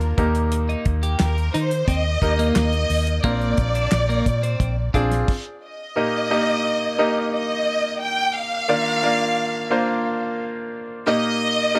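A lush, bowed violin section carries the melody from the start, its soft attack and expressive vibrato giving this hopeful, uplifting piano-driven pop passage in Eb major a warm ensemble glow at 88 BPM in a straight 4/4. Beneath it, a brilliant concert grand piano plays the accompaniment with a deep bass and short, polished sustain, moving between Eb and Bb-based chords. A round, foam-muted electric bass sits up front with a punchy tone, while a dry, dark 70s drum kit supplies a fat snare, tight kick, hi-hat, handclaps and crash cymbal with a rolled-off top. From 0.7 seconds, a clean, twangy twelve-string electric guitar adds a compressed, picked riff shimmering with tremolo. The rhythm section drops out in a stop at 5.3 seconds, leaving the strings and piano to carry the second section alone until the cut at 11.8 seconds, all set in light reverb and studio ambience.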